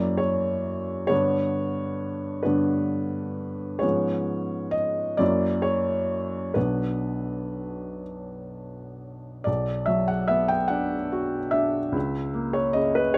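Lightly reverberant and intimate, this wistful, mournful romantic nocturne, cut from a longer piece, features a felt-muted upright piano heard up front with a soft, mellow tone as it moves in a rubato 12/8 through a dark chord progression over about 13.2 seconds.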